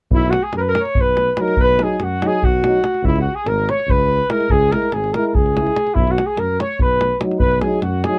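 A festive Balkan brass band excerpt opens at 0.1 s with a flugelhorn carrying the melody up front, a tuba holding down the bass, and a deep, close davul driving the lopsided 7/8 metre with a straight feel. The flugelhorn sounds warm yet distant and roomy, while the tuba, also up front, is mellow with a smooth top and a light vibrato. A clear alto saxophone joins almost at once as a second line in the same register as the melody, sitting in the background. At 1.4 s a close-miked French horn and a euphonium enter as soft-attacked accompaniment, both with light vibrato, filling the middle of the texture. The harmony moves from B to C#m and back to B, and the virtuosic, classically styled playing sits in a dark production with light reverb.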